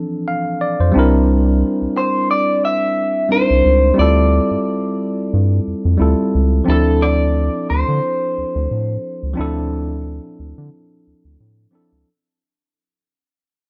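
An 89 BPM groove in 4/4 carries a light swing on the sixteenths, setting a smooth, silky mood for this lush 1970s-style soul piece in D minor. A worn, slightly out-of-tune tine electric piano played through a combo amp supplies the accompaniment from the start, moving through Dm7, C9 and Dm11 chords. A round, deep analog bass joins at 0.8 seconds, its dark, sustained tone blending sine, triangle and sawtooth colours with a touch of ring modulation and detuning. At 2.0 seconds an electric guitar through a small old amp takes the melody in a high register, its picked, slightly broken-up, lo-fi sound coloured by a phaser. All three parts sit up front in a light reverb, and the music begins to fade out at 6.7 seconds as the harmony returns to Dm7, leaving this passage cut from a longer piece.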